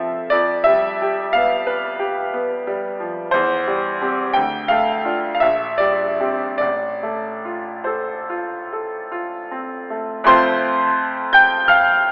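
Heard through a thin telephone-like filter and a moderate 1.9-second scoring-stage reverb, this tender, dreamy fragment of a romantic classical nocturne in F major unfolds in a rubato 9/8 at 47-60 BPM, with a solo concert grand piano that sounds brilliant and worn, with deep bass, placed up front as it drifts from G7/F through C/E, Dm and F/A before settling on F at 10.3 seconds.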